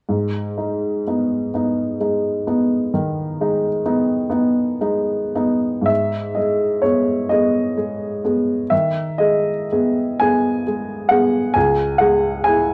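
A warm, intimate baby grand piano carries this short romantic nocturne alone, sitting present and up front with its action noise clearly audible as it plays from 0.1 to 12.7 seconds. The mood is yearning and melancholic, set in G# minor and a slow, rubato 12/8 at roughly 35 to 45 beats per minute counted in dotted quarters. The harmony rests on G# minor before moving to C# minor at 11.6 seconds, with the playing spanning from C#2 up to G#5. A second section begins around 5.9 seconds, giving the brief passage a sense of unfolding before it is cut from the longer piece. The sound is framed by a moderate large-studio reverb and the worn character of old cassette tape, whose warbly pitch drift lends a fragile, faded quality.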